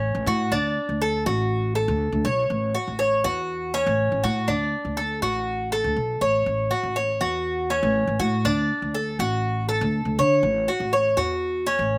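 A straight 4/4 pulse at 121 BPM drives this sunny, danceable Cuban son and guajira passage in A major, cut from a longer piece and swaying between A6 and Dmaj7 chords. Up front, the acoustic Cuban tres picks warm arpeggios on its doubled, partly octave-paired metallic strings, with a slapback echo trailing each note, while a pizzicato upright bass on gut strings supplies a woody, thumpy foundation underneath. The sound is dry and open, captured outdoors with little reverb.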